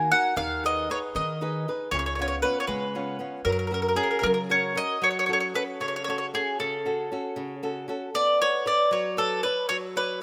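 A rubato 6/8 lilt, counted in dotted quarters at about 78 BPM, carries this romantic, passionate Italian folk excerpt, tuned slightly high to A4 = 441 Hz. Up front, a bright, woody mandolin picks the melody on its double strings, ranging from G#4 to F#5. Beneath it, a fingerpicked acoustic flamenco guitar supplies the accompaniment, while a warm pizzicato upright bass with steel strings anchors the low end until it drops out at 4.8 s. The harmony moves through G#m/D#, C#7 and F# in F# major, then darkens to F# minor at 5.0 s, where F#m gives way to Bmadd9. A moderate, lush hall reverb with a 2.9-second tail surrounds the parts in a rough, home-demo mix.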